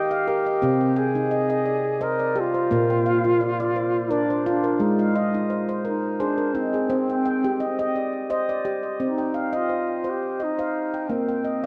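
Gentle and meditative, this world-music excerpt in a lightly swung 3/4 pairs a dark, folk-style duduk melody with vibrato, soft attacks and scooped notes against ringing, bright stainless-steel handpan arpeggios struck with sharp finger strokes, both up front with delay and bathed in a wet echo-chamber reverb within a dark, warm production.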